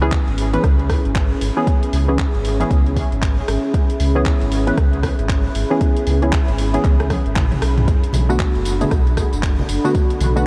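Deep house with a hypnotic, smooth mood, this short cut from a longer piece rides a swung groove in 4/4 over a C#m7 chord that moves to Bm7 near the close. A dark, moody analog pad holds sustained chords throughout, its detuned sawtooth and triangle tones with a sub octave blooming on a slow attack and long release, treated with chorus and sidechain pumping. Muted, deep dub chord stabs with a sawtooth filter pluck sit beneath it, washed in lush chorus and tape echo and also pumping against the kick. Underneath, a full sine sub bass with an octave adds tube saturation, while an overdriven, deep electronic kick sits up front beside a layered drum kit of handclaps, hi-hat, rim click, tambourine and toms that plays a fill from 7.1 to 7.9 seconds. Bright, damped, low-tuned congas enter in the background at 8.1 seconds, and light digital reverb gives the mix a gentle sense of space.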